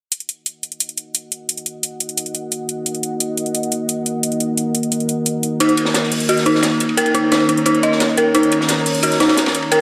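A dark, detuned synth bell stands out with eerie, inharmonic arpeggios from 5.6 seconds, treated with chorus, tremolo and delay, in this dark, mechanical stretch of technical drum and bass at 175 BPM in Eb minor. Metallic electronic hi-hats run from the start, and a deep, moody sawtooth pad with a sub octave holds a sustained Eb minor chord from 1.5 seconds. At 5.6 seconds a crunchy, gritty breakbeat kit with a high-tuned snare and dark cymbals joins, all set in a moderate plate reverb.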